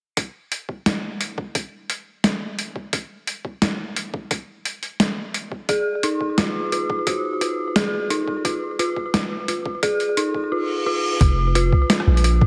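A swung, half-time drum and bass groove drives this tense, dark fragment, with a gritty, pitched-down sampler-style kit of hi-hat, rim click and high-tuned snare sitting over a thumpy electronic kick, both compressed, overdriven and up front. At 5.7 seconds an eerie, inharmonic FM synth bell enters with detuned arpeggios through chorus and delay over suspended chords. A reverse cymbal leads into the drop at 11.2 seconds, where a deep, mellow 808-style sine bass lands, and the mix sits in a lush hall reverb with a heavily squashed, radio-like sound.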